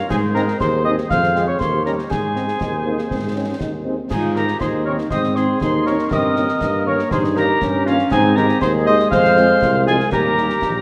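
Proud and rousing, this short cut from a military-style wind-band march in Ab major moves at 120 BPM in a straight 2/4, with a dark cornet carrying the melody over an up-front tuba bass, a pure wooden piccolo and tight woodwind section on second lines, bright trombone chords in the background, a very quiet French horn accompaniment, concert snare, bass drum and dark clash cymbals, and a distant euphonium line heard only from 2.6 to 4.0 seconds, all set in a wet concert-hall reverb.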